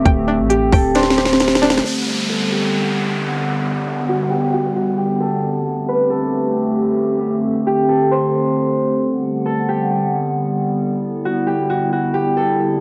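Atmospheric cloud-rap hip hop with a dreamy, floating half-time feel, this short fragment opens on a bright, twangy resonator pluck arpeggio, a boomy sine 808 bass and an up-front trap kit with a hard-clipped kick and crisp hats that roll into a fill before dropping out near 1.9 seconds, leaving a warbling, nostalgic pad's sustained chords and a mellow fingerpicked concert harp melody, both run through cassette tape, to drift over a downlifter from 1.8 to 5.4 seconds and a long filter sweep in a small booth-like room.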